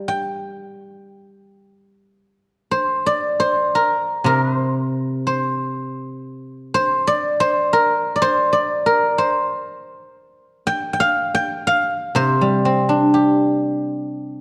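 Elegant and contemplative, this brief passage of Chinese traditional solo plucked-string music unfolds in a free, rubato 4/4 around 60 BPM, tuned to A4 = 444 Hz. A lone acoustic guzheng, played with fingerpicks and set up front, carries the whole 14.4 seconds across a range from C3 to C6, its ringing, silvery tone opening with a short phrase before settling into a longer second passage at 2.2 seconds. A moderate concert-hall reverb and a dark production surround the instrument, lending the performance a spacious, intimate glow.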